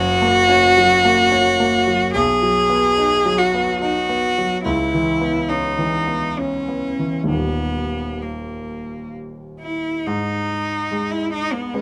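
In a flexible, rubato triple metre, this yearning, solemn fragment of a romantic classical duo sets a bowed cello melody, clear and smooth with a steady vibrato, up front alongside a polished grand piano accompaniment with a short sustain, which is also placed up front. The harmony moves through F#, B, C#m7 and D# before settling onto a bare G#5 chord as a new section begins at 10.0 seconds. Close, detailed microphones and light reverb capture the intimacy of both instruments.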